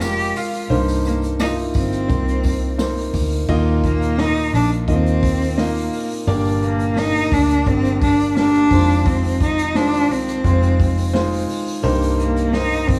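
A bright, biting cello carries the melody from the opening moment, played close and up front by a single bowed player with vibrato and a nasal, airy edge, over a warm concert grand piano with deep bass and long sustain. This is a bittersweet, earnest stretch of piano-driven pop in C minor at 86 BPM in a straight 4/4, cut from a longer piece. A vintage fingered electric bass, foam-muted, dark and round, holds the low end, while an unplugged acoustic drum kit sits distant and roomy with dark cymbals, a medium-tuned snare, a punchy kick and bundle sticks. A jingly tambourine adds faint colour in the background until 3.3 seconds. The harmony moves through Fm7, Cm7, Ebsus2 and Gm before returning to Fm7 and Cm7, all set in a small room ambience.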